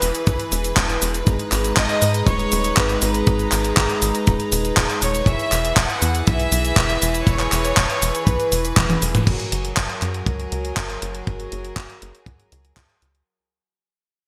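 Bright 1980s-style digital production with a lush hall reverb frames this melodramatic, nostalgic italo disco excerpt at 120 BPM in 4/4. A tight, punchy sawtooth sequencer bass drives beneath an up-front, gated 80s digital drum machine with cabasa, handclaps, hi-hat, toms and crash cymbal, joined by a dry, mid-forward acoustic kick drum, while a biting studio string section holds sustained chords over E, G#madd9 and F#add9. A clear chamber violin section with light vibrato and digital delay carries the melody until 9.0 s, and after a drum fill at 8.8 s the track fades out from 9.3 s.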